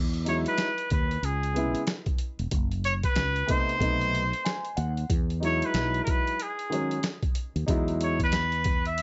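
Warm yet cool, this jazz-hop excerpt swings lazily over a gritty, pitched-down, tape-warm boom bap kit with a thumpy kick and medium-tuned snare, while a round, punchy fretless bass anchors the low end up front. A dark, vintage-toned grand piano comps through jazzy seventh and ninth chords under plate reverb, stepping forward with a brief fill from 4.1 to 5.1 seconds. Leading the way, a nasal, breathy trumpet with a straight mute sings a short solo line with light vibrato and scooped notes, its sound both close and set in a roomy, distant space.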